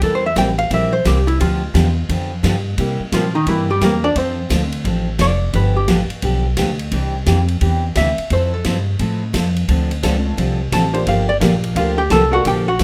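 Down-home and playful, this short western swing excerpt moves at a brisk 174 BPM in 4/4 with a 64% swing on the eighth notes. A dark, clean archtop guitar, picked and up front, carries the solo line, playing from the start to 5.9 seconds, returning briefly around 8.0 seconds, and coming back from 10.7 seconds to the end. Beneath it, a bright, full-bodied dreadnought acoustic guitar picks an accompaniment while a woody pizzicato upright bass sits prominently in the mix. A swinging big-band kit with a punchy kick, medium-tuned snare, hi-hat and ride cymbal keeps time in a natural studio room sound. Near the close, a jangly, metallic tack piano slips in at 10.0 seconds from the background, as the harmony moves from C7 and G7 through Fmaj7 and Dm7 to Gm7, all held in moderate studio reverb.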